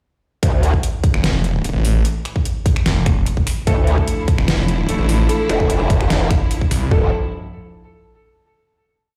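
A heavy, chaotic wobble dubstep piece in D minor opens at 0.4 seconds straight into the drop: a punchy, overdriven electronic kit with kick and floor tom up front, alongside a growling, detuned growl bass whose chorus-thickened, saturated wobble changes speed. Soon after, a snarling sawtooth bass joins with chopped, aggressive phrases carved by a moving notch, while the layered kit's deep snare, metallic hats and finger snaps sit lower in the mix over a half-time feel at 148 BPM. At 3.7 seconds the growl bass returns, and a warm, smooth grand piano enters with a repeating riff in octaves, colored by vintage 12-bit sampler grit and delay. At the same moment, a lush, clear string section adds sustained bowed chords with vibrato, pumping against the sidechain. The drop gives way at 6.9 seconds to a final chord, and the whole mix booms as if played on a big sound system in a bare room, with a large studio reverb.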